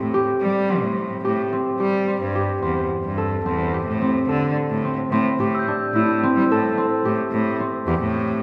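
Moving in a straight, uneven 7/4 pulse, this pensive, hypnotic chamber piece, cut from a longer work, sets thumb-plucked concert harp arpeggios ringing up front over a rich, bowed solo cello bass line with vibrato and a smooth top, both playing throughout and sitting on an A minor seventh harmony. At 5.5 seconds a soft, bell-like glockenspiel played with rubber mallets adds a mellow, close-miked, dry shimmer for just over a second. The harp and cello are bathed in a long, wet church reverb that lends the performance a spacious air.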